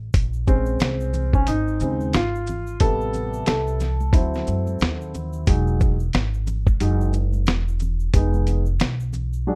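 A pizzicato upright bass with steel strings and a woody tone opens this mellow, smoky jazz-hop fragment. At 0.1 seconds a gritty, compressed sampler-style drum kit joins it, with a thumpy kick, fat snare, hi-hat and shaker, while a soft-handed egg shaker and congas sit brilliant, close and dry in the background. From 0.5 seconds a warm upright piano takes the lead over a swung sixteenths feel and rich chords moving from Bbm9 through Am7, D9 and Emaj9 to Fm7b5, and the dark production keeps bass, drums and piano up front with little reverb.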